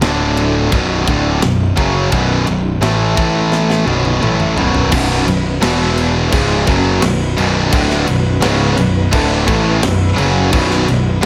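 A bright, high-gain guitar riff and a second overdriven electric guitar drive this relentless, aggressive heavy metal piece together with a growly, punchy fuzz bass and a tight, gritty drum kit whose fill from 3.5 to 4.9 seconds ushers in a very quiet, dark bowed string section with lush vibrato, the whole band heard in a small, lightly reverberant room.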